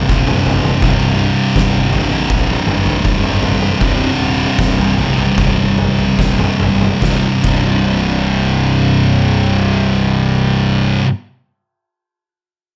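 Under a light reverb, this heavy, ominous stoner and doom metal fragment in 4/4 at 71-82 BPM slows down between 0.8 and 7.0 seconds, as two thick, distorted fuzz guitars play a C5 riff, one up front and one in the background, over a growly, overdriven picked bass with tube saturation, while an oversized low-tuned acoustic kit with a fat snare, punchy kick, toms and crash, dark and gritty in a stone room, plays until 7.7 seconds.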